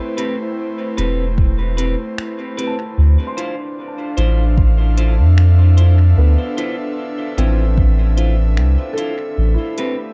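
An airy, breathy pad with chorus and a mellow, felt-muted upright piano playing arpeggios through dub echo open this deep, hazy ambient dub excerpt, soon joined by bright, twangy clean electric guitar stabs and a tape-warm electronic kit of finger snaps and smooth hats, both also treated with dub echo. A round, soft sub bass sits up front from 1.0 s, and a layered electronic kick plays from 1.4 s to 7.9 s, while the chords move from Am7 to Dm9 and back to Am7. The production is dark, set in a digital ambience.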